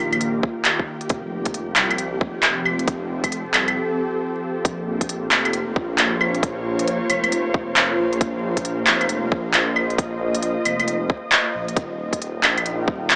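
A dry, gritty recording with light reverb, vinyl crackle and a small-speaker sound opens this ghostly, melancholic future garage passage, cut from a longer piece and set in a swung 4/4 groove. An ethereal, airy pad sits up front from the start, holding sustained chords with a slow attack and long release, its detuned unison tones warbling through ensemble chorus, built-in reverb, vintage 12-bit sampler grit and sidechain pumping. Beneath it, a menacing detuned saw bass evolves with a filter swell and saturated edge, pumping in the same sidechained way. An organic electronic kit of claves, handclaps and crisp hi-hats arrives at 0.1 seconds, joined by a tight electronic kick at 0.4 seconds, both overdriven, up front and re-recorded in a large room. The harmony moves from Eb to F, then after a short break at 3.8 seconds settles on Bbm in the second section from 4.7 seconds before returning to Eb.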